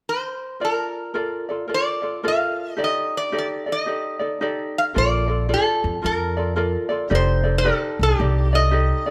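A relaxed swing on the eighth notes at 111 BPM carries this languid, sunny Hawaiian excerpt in Bb major, with a metal-body resonator slide guitar taking the melody up front from 0.1 seconds, its fingerpicked tone nasal and metallic. A light, fingerpicked ukulele joins at 0.6 seconds to accompany over Bbmaj7 and Ebmaj7#11 chords, and a woody pizzicato upright bass enters at 5.0 seconds as the harmony returns to Bbmaj7 before moving to F13. The close, detailed sound sits in light reverb, and the clip is cut from a longer piece.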